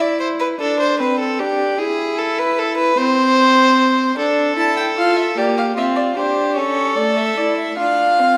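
Bathed in a wet recital-hall reverb, this short cut from a longer baroque-style fugue in D minor moves at a driving, serious 50 BPM in 6/8, with a reedy, gut-strung viola and a nasal, period-style violin bowing together from the start before a second, close violin with an airy bow enters on the high melody at 4.6 seconds.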